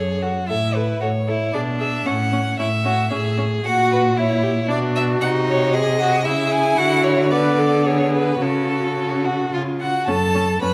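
Cheerful and graceful, this brief fragment of a quick classical-period string quartet movement in F# minor moves at 114 BPM in 3/4 with a rubato feel, as a smooth, distant first violin carries the melody over an even second violin line, an expressive viola accompaniment colored by vibrato and portamento, and a focused, close cello bass sitting up front, all four rich-toned players heard throughout in a moderate scoring-stage reverb, with harmony passing through chords like G#dim/B and F#7/A# before moving through C# at 9.5 seconds to settle on F#m at 10.1 seconds.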